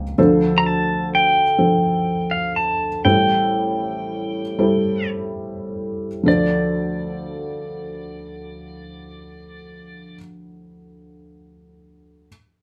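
A felt-muted upright piano opens this heartbroken, reflective acoustic folk-pop ballad in D minor, its dark, boxy tone close and intimate with audible action noise, moving through Dm7 and Am7 in a slow 6/8 that slows down until 6.3 seconds. At 0.6 seconds a pedal steel guitar enters up front with the melody, its clean, twangy, compressed electric sound played with fingerpicks, slide and volume swells, before falling away at 10.2 seconds. The band plays live in one room with a wet studio reverb, and the piano carries on alone until this fragment of a longer piece ends.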